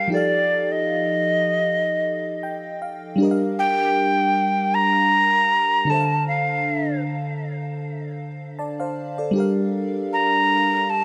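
Moody and late-night, this short R&B excerpt moves at a slow 78 BPM with a gentle sixteenth-note swing in G minor, drifting through F7, Gm7 and Dm7. A breathy jazz flute carries the melody up front with vibrato, a chiffy attack and tape echo, while an FM electric piano layered with a soft pad supplies lush, dreamy chorused accompaniment and slips in a fill at 2.0 seconds. Light reverb and a dark, warm production wrap the sound.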